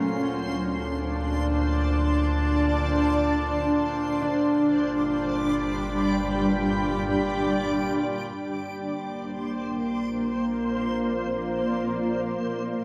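An up-front granular cloud pad of blurred, slowly evolving sustained chords leads this weightless, warm ambient excerpt in free time and Bb major, drifting from D to G to Bbadd9 over a dark, wave-folded rumbling drone that enters at 0.6 s and fades in from 8.4 s. Beneath it a reedy, nasal harmonium breathes in the background, while a bright, reversed and detuned swelling texture with lush chorus floats high above, and a very quiet, mellow fingerpicked concert harp plays ringing arpeggios until 8.6 s, all within a dreamy mix soaked in hall reverb.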